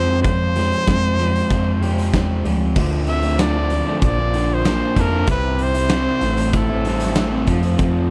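A straight 4/4 indie rock groove rolls under this wistful, jangly clip cut from a longer piece, driven by a big acoustic drum kit with a fat snare, punchy kick and bright cymbals in a pumping stone room. A smooth-topped solo trumpet carries the melody with pop vibrato and tape echo until 7.5 seconds, over two picked overdriven guitars, one crunchy with lush chorus and echo sitting in the background, the other raw with spring reverb. A mellow, clean tine electric piano holds down the bass while the chords drift from Fmadd9 through Dm7, Bbmaj7, C and Am7 before settling on F.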